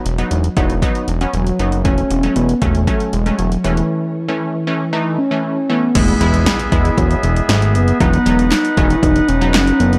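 A fat, saturated analog bass sits up front in this wistful yet bright synth-pop excerpt at 117 BPM in E major, tuned to A4 = 435 Hz. Above it are a mellow, horn-like synth lead with soft attack, vibrato, chorus and analog delay, and a funky, detuned polysynth comp bathed in shimmer reverb. A punchy, overdriven analog drum machine, re-recorded in a large room, plays kick, snare, handclaps, hi-hat and crash, with a break from 3.9 s; at 6.0 s a chamber organ with a soft oboe stop and chiff enters with sustained chords, along with a very quiet electronic impact, all within a dry, gritty hardware sound.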